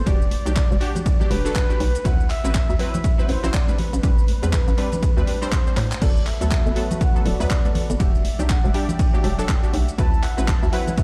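Deep house at 121 BPM with a 16th-note swing, this moody, late-night excerpt opens on a punchy analog kick up front, a hollow, bouncy FM bass pumping under the sidechain, muted dub chord stabs soaked in tape echo and cassette grit, an overdriven layered kit of claps, hats, ride, shaker and crash, soft-handed high-tuned congas in the background, and a round, horn-like synth lead with vibrato and delay singing over Em9, D13, Am11 and Gmaj9, before a drum fill at 5.8 seconds and a smooth, warbling vintage pad joining at 6.3 seconds, all set in a large studio reverb.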